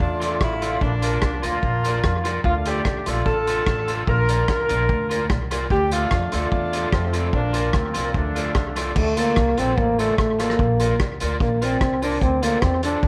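A straight 4/4 ska pulse at 147 BPM drives this energetic, driving passage in D minor, which moves between Dm and Bb. A vintage drum kit with a tight kick, dark cymbals, hi-hat, crash and rim click pumps in a small room, while a woody pizzicato upright bass holds the low end. An electric guitar on the edge of break-up adds twangy, picked accompaniment, and a jingly tambourine sits close but in the background. A tight, up-front horn section with vibrato carries the melody until 8.9 seconds, then a breathy, whispered trombone takes over as soloist from 9.0 seconds with a soft attack and intimate, mellow tone. Slapback echo colours the horns, drums, guitar and tambourine, and a moderate spring reverb with small-room ambience gives the whole track a vintage glow.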